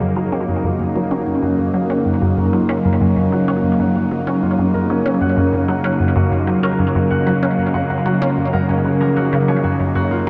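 Ambient, sequencer-driven space music with a luminous, expansive mood, where a swirling, detuned analog pad holds sustained F#6 chords through phaser and chorus, a ringing fingerpicked concert harp spins arpeggios under a filter sweep and tape echo, a squelchy, resonant blip pluck drives an up-front riff, and from 1.4 seconds a very quiet, breathy wind-like noise texture drifts in, all bathed in a huge, dark reverb in this excerpt from a longer piece.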